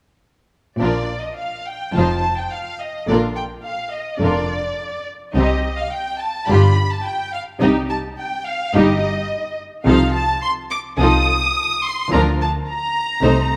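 Beginning at 0.8 s, a symphony orchestra's string sections enter together in a quick, spirited and graceful classical-period movement with a rubato feel, cut from a longer piece. The violins carry the melody up front with a rich, focused vibrato, a second violin line and the even-toned violas fill the middle, and the intense cellos join the double basses, whose light vibrato is smooth on top, on the bass. A moderate scoring-stage reverb surrounds the bowed ensemble as the harmony moves through Bb, Cm and F7/C before settling on Bb/D at 12.1 s.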